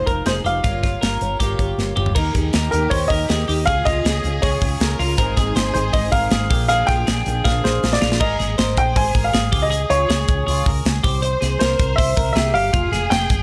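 A brisk, straight 4/4 pulse at 159 BPM drives this bittersweet, restless fragment of jangly indie pop, where a clear upright piano with audible action noise carries the melody over shimmering picked twelve-string acoustic guitar that drops out at 8.2 seconds, twangy twelve-string electric guitar arpeggios bathed in spring reverb and digital delay, a round, dark fretless bass, and a punchy, up-front studio drum kit with fills at 1.8 and 7.5 seconds, while a lush, distant violin section adds a second line from 2.2 seconds, all in a light reverb and moving from Fm7 through Eb, Db and Ab to close on Fmadd9.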